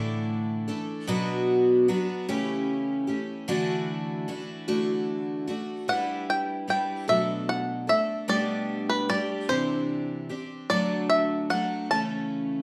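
Acoustic folk in 6/8 at 50 BPM, this short excerpt in G major carries a nostalgic, hopeful mood, with a picked twelve-string acoustic guitar playing shimmering, octave-doubled accompaniment throughout, complete with audible finger squeak. A bluegrass banjo, played with fingerpicks, sounds briefly at the opening and then takes up the melody from 5.9 seconds with a twangy, percussive edge. Both instruments sit up front in a large studio reverb, as the harmony moves through chords such as Dsus2/A, Bm7, Cadd9 and A/C#.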